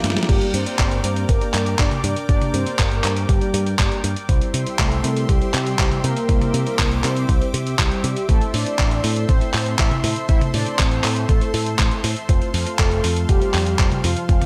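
A punchy, bright picked electric bass with an envelope filter drives this danceable, melodramatic italo disco passage, cut from a longer piece, in a straight 4/4 groove. Up front, a gritty, compressed sampler-style drum kit with overdrive and gated reverb opens on a drum fill, adding handclaps, hi-hat, toms, crash cymbal and a medium-tuned snare, while a thumpy, overdriven electronic kick joins at 0.3 seconds. Carrying the melody, a round, full-bodied synth brass with detuned sawtooth tones, a filter sweep, vibrato, chorus and digital delay sits over a lush, thick unison pad whose slow-attack sustained chords shimmer with chorus. In the background, a mellow tine electric piano adds clean stabs through its built-in speakers. The harmony moves from Gm to C, Am and F, and the mix is dry, with little reverb.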